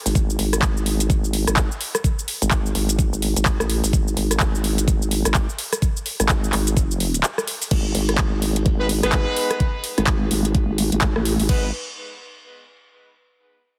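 Bass house with a swaggering, aggressive attitude, cut from a longer piece and driven by a swung sixteenth-note groove in four. A vowel-sweep wobble bass sits up front from the start, its nasal, formant-filtered tone saturated with overdrive and chorus and pumping against the sidechain. An electronic kick drum with a knocking punch anchors the beat, while a garage drum kit adds crash cymbal, handclaps, metallic hi-hats, rim clicks and shaker, both re-recorded in a small room. The opening drop runs to 7.7 seconds, with a short break just before the music settles onto a G# minor chord. At 8.8 seconds a bright, tight horn section enters with punchy pop-style stabs carrying light vibrato, pumped by the sidechain and trailed by tape echo. The mix is dry and heavily compressed, with a radio-like sound.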